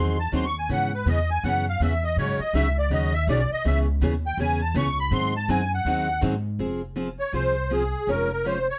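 Acoustic string swing in the jazz manouche style, fiery and virtuosic at 163 BPM, this short cut from a longer piece features a reedy, shimmering musette accordion soloing up front over a boxy parlour steel-string guitar's picked accompaniment and a woody, thumpy pizzicato upright bass on gut strings, all in a dark production with light reverb as the harmony moves from G#7 and C#m7 to an Fm passage at 6.6 seconds.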